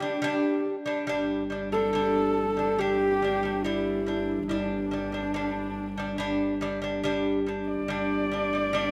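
A husky horsehead fiddle carries the melody up front, bowed with a soft attack, light vibrato and gliding portamento in this vast, galloping piece of Mongolian folk music at 70 BPM in 4/4. Up front beside it, a bright lute fingerpicks delicate arpeggios on nylon double strings. At 1.1 seconds a distant double bass enters with a pure, floating sul tasto drone on G1. The whole passage sits over a G5 chord in the wet bloom of a recital hall and is cut from a longer piece.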